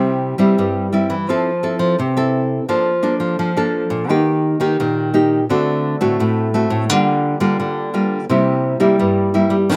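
A straight 4/4 pulse carries this festive, joyful slice of samba and choro, cut from a longer piece. Two fingerpicked nylon-string guitars play together from the first second to the close at 9.8 s, both placed up front. One supplies the accompaniment across a generous range, its classical tone warm, while the other holds down the bass line with a warm, full-bodied sound. The harmony moves from C through Fmaj7, Bbmaj7/F and Eb to D7, Gm7/D and finally C7, giving the passage a lively sense of travel. Recorded outdoors with very little reverb, the guitars sound dry.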